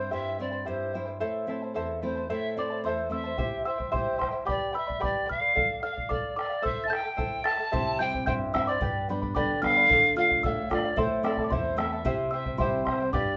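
Earthy and festive, this Andean folk excerpt moves at 111 BPM in a straight 2/4 over a C, G, Dm and Am progression, led by an up-front, breathy bamboo pan flute with vibrato and a reedy chiff. A shimmering charango with double strings and a bright, full-bodied nylon-string guitar with audible finger squeak provide the accompaniment. A delicate, bell-like small celesta adds a sweet second line from 2.6 seconds, and a round, distant bombo enters at 3.4 seconds, all within a moderate studio ambience.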